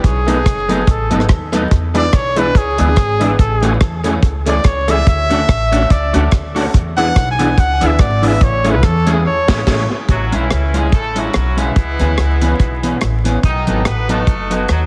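Ska at 143 BPM in A major, cheerful and joyful, with a lightly swung eighth-note feel in this short cut from a longer piece. A warm, up-front trumpet carries the melody as a solo with light vibrato from the start until 9.9 seconds, touched by analog delay, while a dry, deep reggae drum kit with dark cymbals, a tight kick, rim clicks and a medium-tuned snare drives the groove, and a woody, thumpy pizzicato upright bass anchors the low end. A dark, clean semi-hollow electric guitar picks out the accompaniment with tube saturation and a warbly pitch drift, and a gritty overdriven tonewheel organ sits in the background with stabs through a fast rotary speaker, chorus vibrato and key click. The band hits an accent just before the trumpet stops, and at 10.1 seconds a clear, tight vintage horn section takes over the melody in octave doubling as the chords move toward C#m7 and B7. The whole mix is heavily compressed like an old radio broadcast, with vinyl crackle and a light studio reverb.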